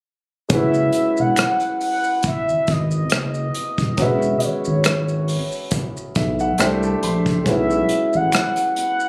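A lightly swung sixteenth-note groove sets a slow, late-night R&B and neo-soul pulse, carried by an acoustic drum kit played with bundle sticks: a punchy kick, hi-hat and rim clicks sit up front, while quieter maracas and finger snaps add a band-limited, vintage texture. Beneath them, a deep, thick sine sub bass with a saturated edge holds long sustained notes until it drops out at 8.3 seconds. A grand piano with an intimate, natural tone, long sustain and audible action noise supplies the accompaniment, and it breaks into a fill between 5.7 and 7.5 seconds. Over the top, a round, full-bodied synth lead with a horn-like, sawtooth character sings the melody with a soft attack, vibrato, chorus and a filter sweep, giving it a warbling, old-fashioned glow. The harmony moves from F#9sus4 through Eadd9 and C9 to Bsus4, and the whole soulful excerpt sounds as if captured on a phone in a club-sized room, with light reverb and compression.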